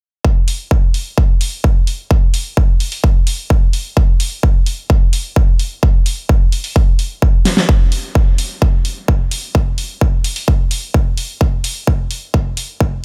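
A straight 4/4 pulse at 129 BPM drives this euphoric, emotional EDM passage, cut from a longer track. A punchy, layered electronic kick drum sits up front from 0.2 seconds, joined at 0.5 seconds by a big-room dance drum kit whose hi-hat and huge snare sound layered and produced, also sitting up front. Both drum parts carry a touch of small room reverb, though the overall mix stays dry. A drum fill at 7.5 seconds tips the groove into a second section at 7.7 seconds, where a build-up and a filter sweep run to the end, raising the anticipation.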